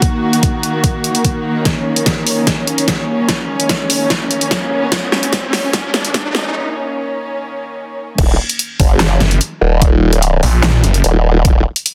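Heavy and menacing, this half-time wobble dubstep cut at 147 BPM in Eb minor opens with a dark, intimate bowed string section pumping against a knocking, overdriven electronic kick and an up-front kit of huge snare, handclaps, bright hats and crash, while a background riser builds through a drum fill into a brief break, until the drop lands at 8.2 seconds with a saturated formant-sweep wobble bass, joined at 9.2 seconds by a snarling, detuned sawtooth bass, all set in light digital reverb and a dense, heavily limited master.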